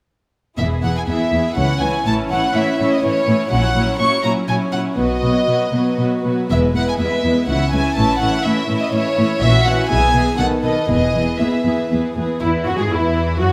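A spirited, lively classical-period movement for string orchestra in E major opens at 0.6 s, with a close, up-front violin section carrying the melody at 122 BPM in a rubato 3/4 while a second violin section adds a supporting line beneath it. Violas with a rich, soft-attack sul tasto tone fill out the accompaniment, and a distant cello section shares the bass line with the double basses, every section sounding pure and floating. The progression moves from E through C#m, A and F#7/A# to B, returning to E by 10.9 s in a reverberant recital hall, and the passage ends as part of a longer piece at 13.5 s.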